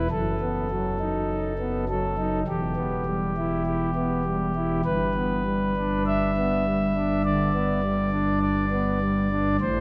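Bathed in a wet church reverb with a long decay of 3.1 seconds, this short cut from a longer classical piece presents a solo pipe organ on a principal stop, up front and smooth, with a baroque voicing that spans from E1 to E5. The mood is dark and grave, moving in a slow, straight 4/4 at 51 BPM in a chorale style. The harmony passes from B7/F# to E minor at 2.5 seconds and arrives on G at 4.9 seconds.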